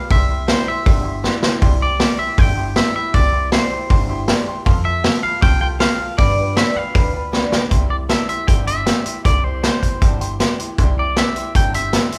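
Rollicking and upbeat, this rockabilly clip in C major moves at 157 BPM, with a bright, clean, twangy electric guitar carrying the melody through spring reverb over a punchy, up-front vintage drum kit, a thumpy gut-string upright bass played pizzicato, and a boxy old ladder-braced acoustic guitar and mellow, long-sustaining dark upright piano tucked in the background, the band playing live together in a large studio room as drum fills land at 1.2 and 7.3 seconds and the chords travel from C to F to G7 before returning to C.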